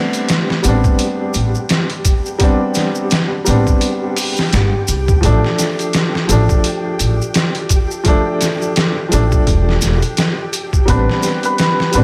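A swung 85 BPM trip hop groove from a compressed, pitched-down sampler-style drum kit with a thumpy kick, plus saturated maracas and a dark, woody pizzicato upright bass up front, carries this melancholic A minor excerpt, where a polished upright piano with tremolo, vintage 12-bit sampler grit and tape echo moves from Am11 to F6/A over a flickering granular texture in the background, a very quiet fingerpicked Celtic harp rings only until 2.5 s, and a shimmering hammered cimbalom enters at 10.9 s.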